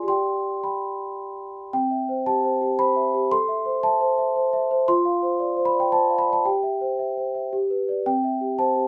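Tender and innocent, this short classical lullaby for solo celesta sways gently in three-four time with a straight feel. A large celesta carries the whole piece alone from 0.0 to 8.9 seconds, its bell-like, delicate tone shaped by soft felt hammers and sitting up front in a light reverb. Its range spans C4 to C6. A brief opening phrase rests on G before a second, longer passage begins at 1.7 seconds, moving from C through A minor and Dm7/F to C/G, then G, and settling home on C at 8.1 seconds. Cut from a longer piece, it captures a sweet, ringing moment of calm.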